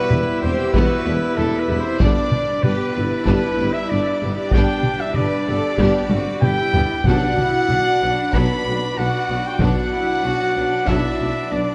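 A straight 4/4 pulse at 95 BPM drives this heroic, epic orchestral film-score excerpt. Close, hard-stick taiko ensemble drums lead the rhythm, with a drum fill at 6.1 seconds and a round timpani entering at 7.1 seconds. Up front, a distant, roomy trumpet plays stabs over sustained chords from mellow French horns, a dark trombone section and a brilliant, majestic full pipe organ, moving through Em, G and Bm. Beneath this, lush bowed strings fill out the texture: a very quiet violin melody, a second violin line, focused violas in accompaniment, and a clear cello section, woody double basses and a dark tuba carrying the bass, all set in a moderate concert hall reverb.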